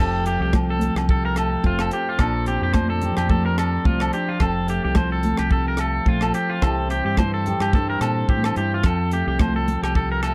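A dry, close recording of a danceable, carefree highlife guitar band at 108 BPM in F major, cut from a longer piece, where a twangy, slightly broken-up picked guitar up front plays accompaniment, a compressed second guitar with slapback echo plays arpeggios, a round, punchy fingered bass holds the low end, a reedy vintage combo organ sustains chords through spring reverb in the background, ringing agogo bells sit behind, and from 0.3 s a tight, polished funk drum kit of hi-hat, kick and rim click joins high-tuned, hard-handed congas over a lightly swung sixteenth feel as the chords move from Fadd9 to Bbadd9, Fadd9, C and Fadd9.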